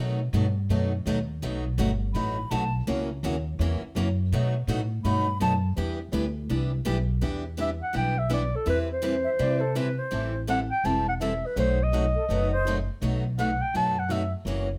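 Swinging and virtuosic, this excerpt of acoustic string swing in the jazz manouche style moves at 166 BPM with a 62 percent swing on the eighth notes. It is carried by two picked steel-string acoustic guitars, one bright and one with fresh strings and finger squeak, and by a woody, thumpy pizzicato upright bass with gut strings sitting up front. An airy silver concert flute takes the opening solo in brief, expressive phrases with vibrato and a soft attack. A breathy, close-miked clarinet then enters at 7.6 seconds with a whispered, intimate jazz melody full of scooped notes, while the flute adds a second line from 9.2 to 12.8 seconds, all under light reverb as the harmony moves from B7 and F#7 through Em7, Cmaj7/E and Am7.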